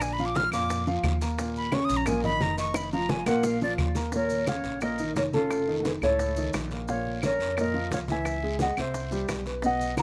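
This sultry, fiery stretch of Afro-Cuban jazz, cut from a longer piece, opens at a brisk 174 BPM in straight 4/4 with a breathy, bright metal flute taking a solo, its crisp, chiffy attack and reedy straight tone touched by slapback echo. Beneath it, an up-front, intimate upright piano with long sustain, audible action noise and a slightly detuned character comps through the chords, also carrying slapback echo, while a woody pizzicato upright bass with steel strings holds down the low end. The percussion sits back in the mix: round, low-tuned bongos, bright, damped congas with a thin, saturated skin, woody claves, raspy guiro with its own slapback echo and grainy, mellow maracas heard from a distance. A drum fill starting at 2.8 seconds closes the flute's solo at 4.1 seconds, and at 4.2 seconds a warm, thumb-plucked flamenco guitar with fresh strings steps in to carry the melody as the loudest voice. 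Harmony moves from Bb through Ebsus2 and Faug7 to Bbm, Dbm and C, all captured dry and outdoors with an open, roomless clarity.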